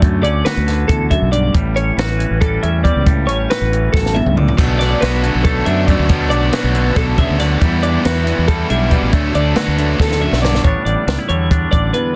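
A compact cocktail drum kit sits up front, dry and tight with a high-tuned snare that clips softly and dark cymbals, driving this playful, wistful math rock and midwest emo excerpt at 277 BPM in 7/8, with fills at 3.9 and 10.0 seconds. A fuzzy, round fingered bass punches underneath while a clean, twangy electric guitar plays accompaniment and a bright twelve-string weaves lush, chorused arpeggios through chords moving from A13 to Bm7, Em9 and D. A double-tracked overdriven guitar riff joins from 4.6 to 10.6 seconds before the passage turns to A9sus4, all under light reverb and a dense, heavily limited modern master.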